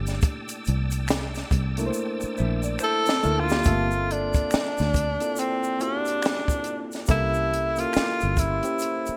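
A reedy electric piano with a subtle chorus opens this soulful, introspective neo-soul excerpt alongside a bright tonewheel organ spinning through a fast rotary speaker with key click, and a round, foam-muted fingered bass sitting up front. A compact cocktail kit of hi-hat, punchy kick and high-tuned snare, dry yet touched by gated reverb, joins at 0.1 seconds with egg shaker and finger snaps, settling into a slow 70 BPM groove in 4/4 with a swung sixteenth feel in G dorian. A drum fill from 1.9 to 3.7 seconds leads out of the opening C13 chord as a dark, clean electric guitar drifts in the background with a lush chorus from 2.4 to 3.9 seconds. A breathy tenor saxophone enters at 2.8 seconds and takes the lead, whispered and intimate, with scooped notes, vibrato and a soft attack in a jazz style, moving over Gm11 and then C7b9. The organ falls away at 3.6 seconds, leaving a small-room ambience and a glossy 1980s-style digital sheen around the band.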